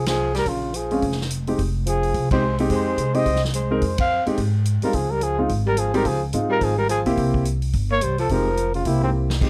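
A dark, breathy trumpet carries the melody over a whispered baritone saxophone second line, a woody, growly pizzicato upright bass, a vintage drum kit with a rolled-off top, and an intimate concert grand piano that enters at 0.9 seconds with audible action noise, all in a cool, swinging small-group bop excerpt in F minor at 214 BPM, punctuated by band accents and closing on a drum fill at 9.1 seconds.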